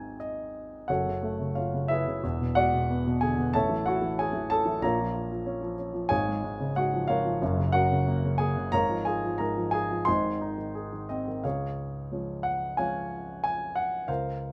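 A warm, up-front grand piano with short sustain sits in light reverb, playing a sunny, hopeful classical solo in Db major at 91 BPM with a rubato feel, tuned to A4 = 439 Hz. A brief opening fill gives way at 0.9 seconds to a lyrical passage that moves through chords such as E7, A and Bbm before settling onto Db over Ab and Gb. At 11.4 seconds a new section arrives on Db, and this short excerpt from a longer piece ends at 14.5 seconds.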